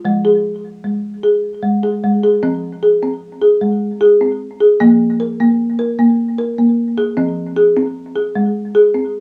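A lone folk marimba played with medium mallets opens the recording, its hardwood bars giving a woody, rustic tone that sits up front in a boxy small room. This is meditative world music at a slow 50 beats per minute, counted in dotted quarters in a straight 6/8, moving through an F minor pentatonic line that stays between F3 and Bb4. The mood is hypnotic, with harmony resting on F minor before shifting to Bb5 over F at 4.8 seconds and returning to F minor at 7.2 seconds. A second section begins at 2.4 seconds and carries the fragment to its cut-off at 9.2 seconds, as it is taken from a longer piece. Cassette tape coloring and an analog delay shade the marimba's otherwise dry strike, while a short, wet booth ambience gives the home recording a studio feel.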